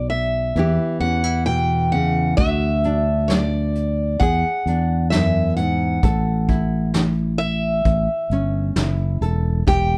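A slow, straight 4/4 pulse at 66 BPM sets a reflective, melancholic mood in this acoustic folk passage, cut from a longer piece and tuned to A4 = 441 Hz. An up-front, dark-toned picked steel-string acoustic guitar carries the melody between D5 and G5, while a full-bodied, fingerpicked nylon-string guitar with a deep classical character fills out the accompaniment from E2 to A4. A round, up-front fingered electric bass anchors the low end from E1 to E2 with a warm, direct-and-amped tone. At 2.4 s a vintage brush kit enters with hi-hat, snare and a punchy kick, sounding distant and roomy with a rolled-off top. The harmony moves from B5 to Em, D, E7 and A, all under light reverb in a dark, warm production.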